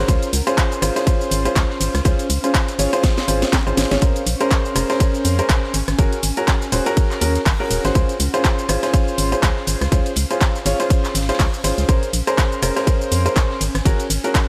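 Piano house with a joyful, uplifting mood, built on a clear, woody upright piano riff roughened by vintage 12-bit sampler grit, carrying delay and sidechain pumping alongside a hollow, organ-like FM bass that also pumps. A punchy electronic kick sits up front with an overdriven house kit of cracking snare, handclaps, hi-hat, ride, rim click and shaker, while a very quiet, gritty garage kit and a blurred granular cloud pad fill the background, with a drum fill at 3.0 seconds. The chords cycle from Dbmaj7 through Bbm9 to Ab9sus4 in a small room with light reverb, in this section cut from a longer piece.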